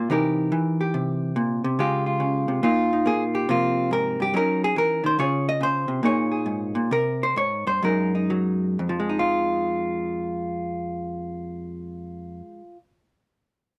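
Swinging and moody, this short passage cut from a longer piece is solo jazz in F minor, moving in 4/4 at 120 to 142 BPM with a swung eighth-note feel. A lone vintage hollow-body electric jazz guitar carries everything, picked cleanly across a range from F2 up to Eb5. Its tone is dark and compressed, and it sits up front in the mix. The harmony starts on a C7#9 and drifts through Dbmaj7, Bbsus4, C7sus4 and Bbm7 colours before settling onto Fm7 at 8.8 seconds, with the pulse slowing down from 5.2 seconds until that arrival. Close, detailed microphones and very little reverb give the guitar an intimate, dry presence.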